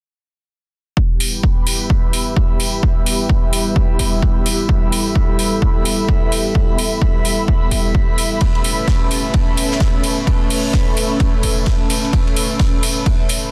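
A dark, nasal analog pad with slow-swelling sustained chords and a punchy, up-front electronic kick open this aggressive, swaggering bass house excerpt at 129 BPM in E dorian with a swung 16th feel. An airy, breathy pad with chorus and phaser and metallic, tape-warm electronic hi-hats follow, both pads sidechain-pumping. At 8.4 seconds the harmony moves from Em to Aadd9 as a dry, damped 70s drum kit enters quietly with a fat snare, dark cymbals and a rolled-off top, all under light reverb and a dense, heavily limited master.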